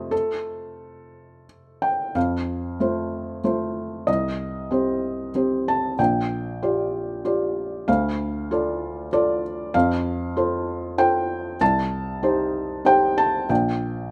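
Lightly reverberant and intimate, this 14.1-second excerpt of a contemporary classical piece for solo felt-muted upright piano moves in a reflective, fragile rubato 3/4 at 95 BPM in C dorian, its soft, mellow tone sitting up front with audible action noise as the harmony drifts from F through Cm, Gm7/Bb and Dm before circling back to close on Gm/Bb.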